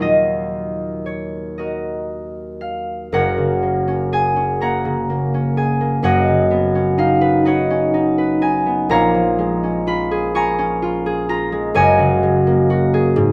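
A solo concert harp opens on an Ebmadd9 chord, setting a gentle, mysterious mood in a slow, rubato 6/8 that moves at roughly 38-44 BPM in dotted quarters. The harp is fingerpicked and sits up front, its acoustic tone warm and ringing across a span from F#1 up to C#6. At 3.1 s the music shifts from Eb minor into F# major, unfolding through F#add9, Badd9/F#, A#m7 and finally F#69 at 11.8 s. The added-tone chords lend the harmony a soft, suspended color that suits the unhurried, floating pulse. A moderate stone room reverb gives the plucked notes a natural halo, and the passage is cut from a longer piece, stopping at 13.3 s.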